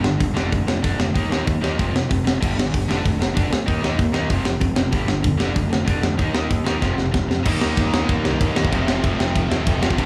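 Captured as a band playing live in one large studio room with moderate reverb, this angry, urgent punk rock excerpt from a longer piece drives at 190 BPM in straight 4/4. An up-front acoustic drum kit with a high-tuned snare, tight kick and rolled-off top leads the mix. A growly fuzz bass and two bright picked guitars, one crunchy and very quiet and the other distorted and in the background, churn through a riff cycling Dm/F, Eb5, F5 and G5. After a drum fill at 6.8 seconds, a double-tracked overdriven guitar joins at 7.5 seconds as the chords move to Eb and F.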